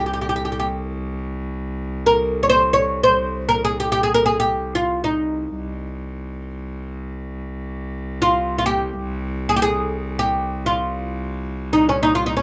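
Turkish makam ensemble music in free time and C makam kurdi, hypnotic and longing, where a bright, woody fretless oud with double strings, plucked with a plectrum, carries the melody up front between Db4 and Db5 while a single distant bowed cello holds a smooth, even C2 drone with vibrato, both sounding throughout the 12.4 seconds of this fragment cut from a longer piece, in a moderate small room.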